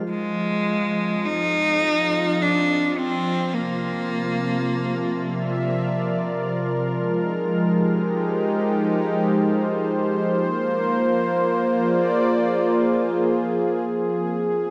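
Ambient excerpt, melancholic and spacious, where a warm, detuned sawtooth pad fades in with chorused sustained chords over a calm organ-like sine drone, while a clear bowed cello with light vibrato and tape echo sings up front until 5.8 seconds, all soaked in a dreamy plate reverb.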